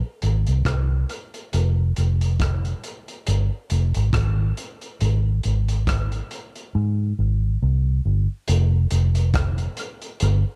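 Dub reggae with a spacious, meditative mood, moving at an unhurried pace with a light swing on the sixteenths, cut from a longer piece. A vintage muted fingered electric bass sits up front, its amped, foam-muted tone dark and round as it carries the low end throughout. A crunchy breakbeat drum kit plays hi-hat, kick drum and rim click with a tight kick and a saturated, gritty character, set lower in the mix with a rolled-off top and treated with dub echo. The drums drop out from 6.7 to 8.5 seconds, leaving the bass alone before the kit returns as the music moves into a new section. The production is dry, dark and warm, with little reverb.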